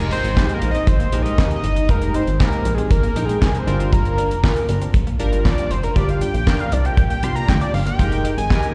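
Heard as a live gig through the venue's PA, with recital-hall reverb around it, this short excerpt of slick, danceable early-eighties boogie funk in F dorian moves at 118 BPM over Fm11 and Gm7. A fat, detuned analog lead with phaser, vibrato and slapback echo takes a solo across the full 8.7 seconds above a glossy, warbling chorused polysynth and a punchy, plucky analog bass sitting up front. Underneath sit a twangy, slightly broken-up electric guitar riff in the background and a dry, damped 70s drum kit with a tight kick, fat snare, hi-hat and handclaps.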